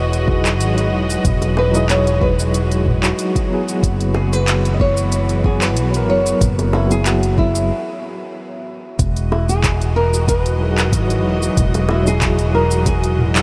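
Sunset chillout with a smooth, relaxed swing, in which a fingerpicked flamenco guitar carries the melody through tape echo over dark, soft-attack bowed strings, a round, punchy fretless bass in lush chorus, tremolo tine electric piano through analog delay, a smooth R&B kit of handclaps, hi-hat, shaker and toms, a deep overdriven electronic kick and very quiet high-tuned bongos entering at 1.4 seconds, all bathed in a dreamy ambient reverb, with a break at 7.7 seconds before a filter sweep on the electric piano from 9.0 seconds.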